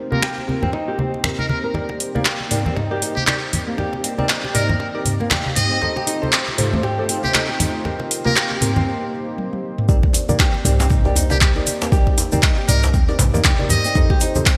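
A buzzy, metal-muted trumpet with vibrato and scooped notes carries a jazz-style melody over fingerpicked flamenco guitar arpeggios, deep detuned chord stabs, a moody background pad, low-tuned congas and a deep, layered electronic kick with metallic-hatted afro-pop drums in this spiritual 118 BPM afro house groove in C dorian, which builds to a break and drum fill before dropping at 9.9 seconds, where a boomy 808-style bass, a grainy tube shaker and a rattling djembe join beneath bright, lush hall reverb.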